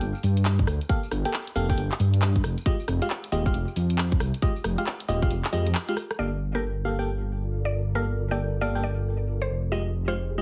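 A swung two-step rhythm from a tape-warm garage kit of handclaps, hi-hat, rim click and tambourine, anchored by a tight, up-front electronic kick, drives this soulful, late-night UK garage excerpt, as glassy, bell-like FM electric piano stabs with chorus, phaser and tape echo sit over a deep, rumbling detuned saw bass, until the kit drops out at 6.2 seconds after a brief break and drum fill, giving way to a woody, round mallet-like synth pluck melody and silky string machine chords with sampler grit and sidechain pumping, while filter sweeps run through the piano and strings under a heavily compressed radio sound.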